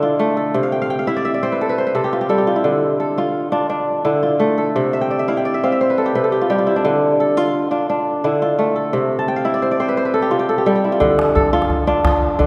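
Hypnotic and reflective, this short cut from a longer West African traditional piece in D dorian moves at 115 BPM in a straight 12/8, with an up-front, crisp, ringing kora spinning fingerpicked arpeggios from C3 to A5 over a Dm–C vamp, adding fills around 0.6, 4.9 and 9.2 seconds, before a deep calabash joins at 11.0 seconds, all washed in a lush church reverb.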